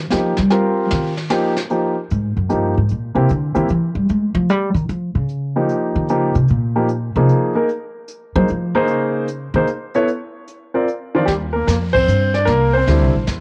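A swung waltz lilts along in three, giving this jazz piano trio fragment a playful, warm mood. The pizzicato upright bass sits up front with a woody, thumpy tone and carries a solo from the opening until about 11.3 seconds, moving over changes such as C7, Fm7 and Eb7. The grand piano carries the melody with a polished, present sound and a cassette-tape coloring. The brush kit sits lower in the mix, its brushed snare, hi-hat, boomy kick and dark ride cymbal smooth and rolled off at the top, also carrying that tape character. A band accent lands at 11.9 seconds as the music moves into a new section, all in a small room with light reverb and the homespun feel of a cassette recording.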